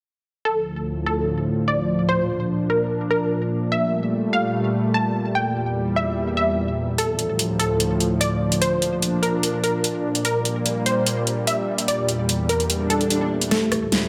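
A half-time 4/4 groove at 147 BPM drives this aggressive, menacing excerpt of heavy wobble dubstep in D minor, where a lush, detuned supersaw pad holds sustained chords under a filter sweep while a punchy unison pluck carries the melody through a delay, circling Dm, Bb, Gmadd9 and Edim. A deep, moody ambient pad with chorus and its own reverb fades in from 2.5 seconds, sitting dark and full-bodied in the background. The electronic drum kit arrives at 7.0 seconds with a huge snare, metallic hats and rim clicks in a small room, and an electronic swell and riser from 12.8 seconds leads into a drum fill, all within light digital ambience.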